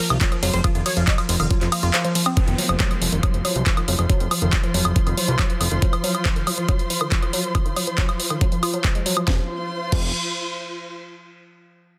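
Intense, hypnotic psychedelic trance at 139 BPM, cut from a longer piece, opening on a drop where a punchy detuned supersaw stab with phaser and tape echo, a woody wave-folded pluck riff with chorus and delay, and a resonant overtone-sweeping drone in the background all pump against an up-front overdriven knocking kick and a drum and bass kit of cracking snare, bright hats, handclaps, ride, crash and woodblock over a fat saturated analog bass, before a background electronic downlifter and a lush, bowed studio string section with expressive vibrato enter at 2.4 seconds, the whole sitting in light reverb under a dense, heavily limited modern master.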